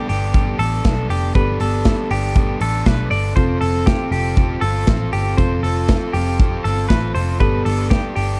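A dark, lightly reverberant production frames this bright, youthful slice of jangly indie pop, cut from a longer piece and moving from Gadd9 to F and back. Up front, a big acoustic rock kit with a boomy kick, medium-tuned snare and hi-hat sets a straight groove, arriving at 0.1 seconds alongside a round, foam-muted vintage electric bass. Above them, a twangy, compressed clean electric guitar plays arpeggios with tremolo, while an overdriven electric guitar accompanies and a reedy, worn, slightly out-of-tune electric piano sits in the background.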